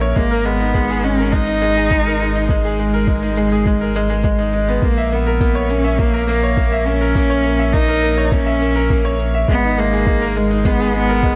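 A bright, brilliant concert grand piano riff with delay opens alongside a round, deep analog bass pumping against the sidechain and an overdriven electronic shaker, setting a cinematic, melancholic tone for this piano and strings electronica at 103 BPM in 4/4. At 0.2 seconds a nasal, bowed solo cello with vibrato and delay takes up the melody up front, while a soft, overdriven electronic kick drum, re-recorded in a small room, anchors the pulse. The harmony moves from G#sus2 through A#dim to G#madd9 under light reverb, and the passage is cut from a longer piece.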